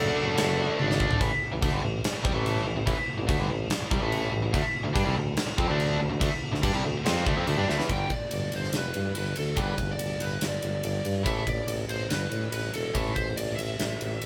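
Hard rock in A minor at 143 BPM, driving and heavy, opens with a brief flash of a lead guitar through a small cranked amp over a dark octave-fuzz lead guitar, while a bright, biting overdriven guitar riff sits up front and a scooped, compressed distorted electric guitar riff sits in the background. A warm, punchy tuba with light vibrato carries the bass throughout, and a huge arena drum kit with a punchy kick, medium-tuned snare and bright cymbals enters at 0.4 seconds, pumping in a hall-like room. After a drum fill around 7.7 seconds, the overdriven lead guitar returns at 7.9 seconds with a melody over G and A5 chords, all captured as a live band in one room with light reverb and a faint mains hum.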